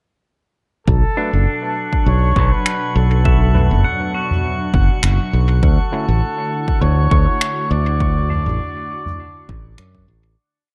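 A soft, punchy overdriven electronic kick at 101 BPM with a light 16th-note swing sets the slow pulse of this deep, hazy ambient dub piece in B minor, entering together with a growly, up-front fingered electric bass, a detuned sawtooth analog pad with chorus holding Bm7 then Dmaj7, and a veiled bucket-muted trumpet playing calling motifs through dub echo. They are soon joined by clean pedal steel guitar arpeggios with volume swells and slide in drifting loops of unequal length through dub echo, gritty tine electric piano stabs in the background with dub echo until 6.1 s, a glassy, chorused glass-harmonics texture with its own reverb holding a high note, and a distant soft-mallet kit of snaps and low toms with dub echo from 2.7 s, all in a small room before fading out from 7.2 s.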